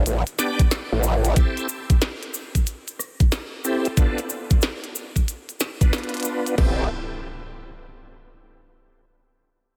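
Swaggering and playful, this glitch hop fragment opens on an aggressive, wobbling growl bass, then a knocking, up-front electronic kick drum, a glitchy drum kit with a tiny snare and clicky hats, and a grainy cabasa settle into a swung groove beneath shouting stabs from a bright tonewheel organ with key click, slow rotary speaker, 12-bit sampler grit, sidechain pumping and a filter sweep, while a very quiet downlifter and impact mark the turn at 6.6 seconds, where the bass briefly returns as the beat falls away.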